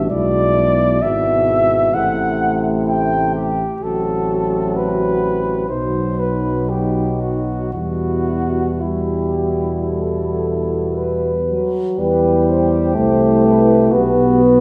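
In a rubato 4/4, this solemn, elegiac hymn-like passage for brass band, cut from a longer piece, is led by a dark, up-front cornet singing the melody with light vibrato. A mellow French horn section with soft attacks carries a second line, while two euphoniums accompany: one close-miked and set in the background, the other warm, distant and roomy, all over a close-miked tuba bass. The harmony moves from E7/B through Am and B to settle on Em, closing on a bare B5 at 13.9 seconds, and the whole ensemble is heard from further back in a wet recital hall.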